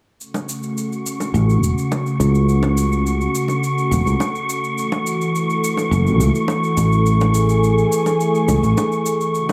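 Sunset chillout at 105 BPM in A major, blissful and warm, where a lush, detuned unison pad with a filter sweep holds sustained chords from A6 to F#m7 over an electronic, overdriven cabasa, round low-tuned bongos, an airy wind-like noise texture and a growly, up-front fretless electric bass entering at 1.3 seconds, all bathed in spring reverb and an echo-heavy mix, cut from a longer piece.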